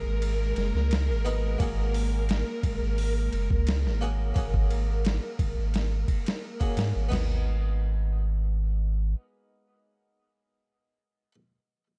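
Trip hop at 87 BPM in G# minor, dark and cinematic and cut from a longer piece: a compressed, overdriven sampler-style drum kit with a thumpy kick sits up front beside a deep, round sub bass, while a brilliant plucked harpsichord with tremolo, 12-bit sampler grit and tape echo carries the accompaniment until 11.3 s, vintage string-machine cellos hold chorused sustained chords over G#m7 and F#add9, and a tense, string-like, bowed-like drone with vibrato lingers in the background before the drums stop at 7.3 s.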